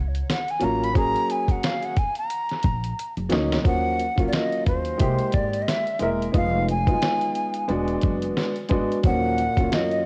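Jazz-hop with a cool, smoky mood and a swung feel, cut from a longer piece and captured as a home recording on cassette with light reverb and small room ambience. A gritty, compressed sampler-style drum kit with a thumpy kick and fat snare sits up front beside a woody pizzicato upright bass and a smooth, vintage upright piano with long sustain, while a breathy metal flute with vibrato and analog delay carries the melody, soloing at the opening before a drum fill at 3.0 seconds. At 9.1 seconds a dark, forceful trombone enters in the background as a second line.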